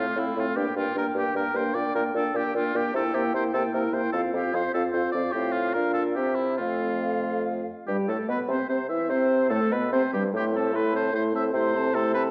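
A cheerful, graceful fragment of a quick classical-period movement for wind quintet, in triple metre with rubato, opens at once with a pure, distant silver flute singing the melody with vibrato over a clear oboe's second line, a dark clarinet in the background, a softly attacked French horn and a mellow bassoon bass, heard in a resonant concert hall through worn old cassette tape with a warbling pitch drift.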